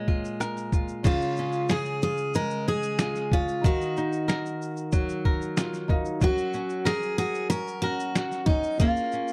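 Heartfelt and carefree, this acoustic pop excerpt moves at 93 BPM in a straight 4/4, set in D-flat major and tuned slightly sharp at A4 = 441 Hz. A picked steel-string acoustic guitar carries the melody up front, its jumbo body sounding warm and full, with finger squeaks audible. Beside it, a bright, boxy flamenco guitar is fingerpicked as accompaniment, also placed up front, while a soft, felt-muted upright piano sits in the background, mellow and intimate, its action noise audible. A trip hop sampler-style drum kit enters at 0.1 seconds, compressed, pitched down and muffled, with a thumpy kick, medium-tuned snare, rim click, shaker and crash cymbal sitting up front. The harmony moves from Bbm7 through Db, Ebmadd9 and Gb before returning to Bbm7, all captured in a dry, close 1970s-style studio sound with little reverb.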